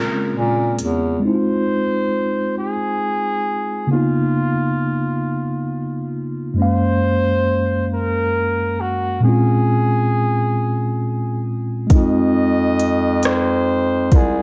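Worn, warbling old-tape sound with warbly pitch drift and studio reverb wraps this sultry, late-night slow R&B excerpt in 6/8 at 45 BPM, moving through Bbm7, Fm7, Db13 and Gbmaj9. A punchy yet roomy flugelhorn with scooped notes carries the melody over a mellow, clean tine electric piano heard through its built-in speakers. A very quiet, dark, woody bowed string section and a clear, vintage bass clarinet sound until 1.2 s, with a brief touch of soft electronic drums, and the bass clarinet and drums, with smooth hats and rim clicks, return at 11.9 s.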